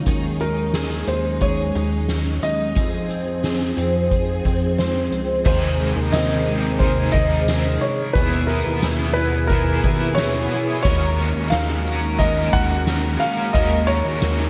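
Ethereal and hazy, this dream pop excerpt moves at a straight 89 BPM in 4/4, its chords drifting from Ab7sus4 over an Eb bass note through Fm7 toward Ab, E and Gbadd9, all three set on that same low Eb anchor. A vintage, organ-like ensemble string pad holds sustained chords in the background while a shimmering, octave-doubled twelve-string acoustic guitar picks arpeggios through ensemble chorus and delay, and a glossy, retro synth bass with a filter pluck and chorus sits low underneath. The soft-mallet drum kit, with its boomy kick, fat snare, dark cymbals and tambourine, is bathed in gated reverb, and a felt-muted upright piano carries the melody from 0.4 seconds, intimate and hushed, with audible action noise and a touch of delay. At 5.4 seconds a cranked, double-tracked stack guitar joins with overdrive, tremolo and analog chorus, and a very quiet vibraphone played with soft mallets and the motor off adds a metallic ring between 6.1 and 11.3 seconds. 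The mix has a bright 1980s-style digital sheen, set in a lush hall reverb with small room ambience.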